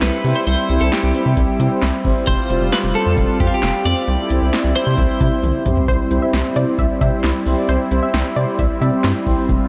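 Bright and wistful, this synth-pop excerpt pairs a clean, picked twelve-string electric guitar melody, touched with chorus and analog delay until 5.6 seconds, with a smooth analog pad, a rubbery, bouncy square bass, punchy electro drum-machine beats with metallic hats and claps, and round synth brass in the background, before a drum fill leads to a lo-fi, warbling pluck at 5.9 seconds, all drenched in a dreamy cathedral reverb.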